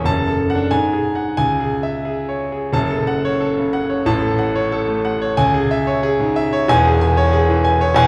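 In a rubato 2/4 at 91 BPM, this stormy, passionate virtuoso classical piano study in F# minor is an excerpt cut from a longer piece, with a solo concert grand playing alone from 0.0 to 8.1 seconds across a range from E1 to A5. Its smooth, vintage tone sits up front with a deep bass, moving from an opening section through chords like D/F# and C#m into a second section from 2.7 seconds that passes through F#m and C#m/E, all set in a wet recital hall reverb heard from further back in the room.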